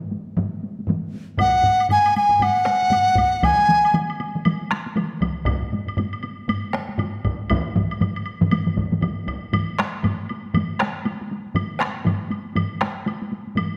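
A swung sixteenth-note feel in 4/4 at 118 BPM drives this ceremonial, powerful Japanese traditional passage, cut from a longer piece and built on layered taiko ensembles struck with heavy and hard sticks, mostly close and dry, with one heavy-stick group in a live room sounding through until about 9.4 seconds. A woody, close woodblock joins at 1.4 seconds, when a mellow large dizi also steps up front with a bamboo, buzzing-membrane tone, airy vibrato and soft, expressive attacks, singing between F#5 and G#5 until 4.0 seconds. The ensemble sits in the generous wash of a scoring stage, and a new section begins at 9.5 seconds.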